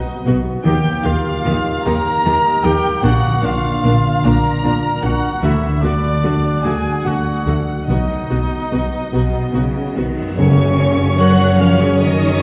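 Hopeful and tender, this excerpt from a cinematic film score unfolds slowly at 49 BPM in a lilting 6/8, with uneven, rubato beats and a key of F# major. A violin section and a solo violin with focused vibrato share the melody, while a cor anglais and a second, smooth violin section shape the second line. Beneath them, a dark grand piano with audible action noise provides the accompaniment and a ringing, fingerpicked concert harp plays arpeggios, joined almost at once by lush viola and cello sections and a double bass section that ground the harmony. Dark cymbals and tam-tam enter very quietly at 7.9 seconds, and at 10.4 seconds the music turns to a new section marked by a band accent, with a mellow French horn section holding soft chords and timpani struck with hard mallets. Brief, very quiet touches from a dark clarinet and a hollow flute appear near 11.2 seconds, and the whole is heard from further back in a wet concert hall, tinged with vinyl crackle.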